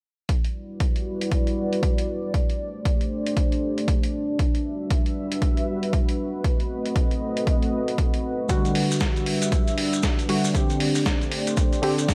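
A light reverb gives this moody deep house cut a close, intimate room, with a punchy, tape-warm electronic kick sitting up front from 0.3 seconds. Around it, a gritty, compressed sampler-style kit supplies hi-hat and a medium-tuned snare over a swung sixteenth-note feel. A deep, detuned sawtooth pad with a sub octave holds slow-attack sustained chords through Em9, D7sus4 and B7b9, its chorus and sidechain pumping making it breathe against the kick. At 8.5 seconds, round, mellow analog keys arrive with fast-attack stabs that decay under a filter sweep, chorus, sidechain pumping and analog delay. Grainy, band-limited maracas join them at the same point, adding a vintage acoustic texture to the warm, dusky groove.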